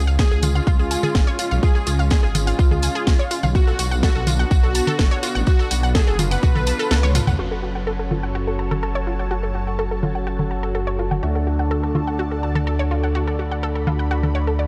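Dark and melancholic, this melodic techno excerpt moves at 125 BPM in F# harmonic minor, built on a deep, rumbling detuned saw bass and a lush, thick pad with chorus, phaser and sampler grit, both pumping under sidechain, while a round analog pluck arpeggiates through chorus, tape and delay. A punchy up-front kick, a house kit with a cracking snare and filtered congas, hats, toms and cymbals, a jingly background tambourine and a smooth supersaw melody with digital delay carry the first half until the kick drops out at 6.9 seconds for an accent and drum fill. From 7.4 seconds an edgy, nasal sync-sweep polysynth adds stabs as filter sweeps move over the drums, arpeggio and polysynth, the chords moving from F#m to D in a dark, lightly reverberant mix.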